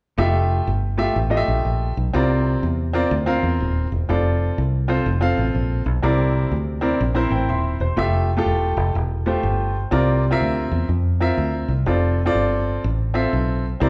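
A clear, up-front grand piano and a punchy, foam-muted fingered electric bass start together at 0.2 seconds in this jubilant, uplifting uptempo gospel cut at 123 BPM in F major, swinging in 4/4 through rich chords like Fmaj9 and C9sus4, with a piano fill at 7.2 seconds leading into a new section at 8.0 seconds, all played live in one room and bathed in a lush large-studio reverb.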